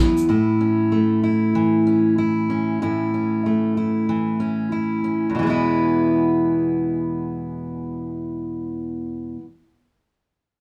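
Easy-going and carefree, this short pop excerpt cut from a longer piece moves at 95 BPM in 4/4 with a gentle 16th-note swing, centred in E major. A fingerpicked steel-string acoustic guitar carries the accompaniment throughout, its dreadnought body giving a full-bodied, up-front sound that spans from E2 to E4. The harmony rests on A from 0.3 seconds before shifting to E at 5.4 seconds, where the opening section gives way to a second passage. A studio reverb with a 0.8-second decay surrounds the guitar, and the recording has the feel of a band playing live in one room. Unhurried and relaxed, the guitar holds the piece together across its 9.5 seconds.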